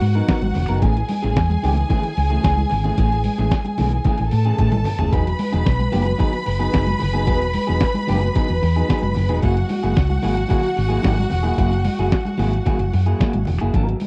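A straight 4/4 disco groove at 112 BPM drives this danceable, glamorous excerpt. A lo-fi, sampler-style drum kit sounds pitched down and muffled, with a thumpy kick, a medium-tuned snare, hi-hat and toms, and there is a drum fill from 4.6 to 5.1 seconds. Congas enter at 0.4 seconds and sit in the background, their thick skins and soft hands giving a vintage, band-limited tone. A dark, round hollow-body bass is fingered up front, while an electric guitar at the edge of break-up plays picked accompaniment through spring reverb. A studio string section carries the second line with bowed vibrato, a soft attack and a smooth top, over chords moving from G#m9 and Amaj7 to Emaj9 and F#9. The sound is dry and close, like a 1970s studio recording.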